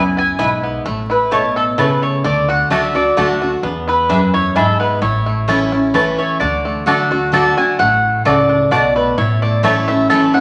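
From the first beat, a driving, lively bluegrass piece at 130 BPM in 3/4 brings in the whole band together: a woody, up-front mandolin carries the melody alongside a twangy, fingerpicked banjo, while a second mandolin adds picked stabs and a full-bodied dreadnought guitar picks out accompaniment. A pizzicato upright bass sits in the background, and the chords move from E through A, D and E7 before a new section starts on D at 6.4 seconds. Vinyl crackle and a large studio reverb give this cut from a longer piece an aged, roomy sound.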